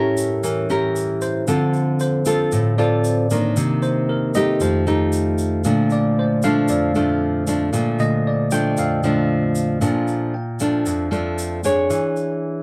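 A straight 4/4 bossa nova groove moves at 115 BPM in Bb major, its breezy, sunny mood cut from a longer piece. A grainy egg shaker with a live-room feel keeps time low in the mix, while an up-front nylon-string guitar, fingerpicked in a classical style, supplies the accompaniment, its finger squeaks audible in the warm acoustic tone. A bell-like tine electric piano, clean, direct and dressed in lush chorus, sits forward as well and carries a solo over the opening stretch until 9.8 s, when a new section begins. The harmony drifts from A7b9 to Dm7, then Cm9 and F9 before settling on Bbmaj7, with an E6 arriving at 11.9 s as the electric piano drops out. The guitar and shaker carry on, the shaker stopping at 12.4 s and the guitar playing to the close at 12.6 s, all held in a moderate, short studio reverb.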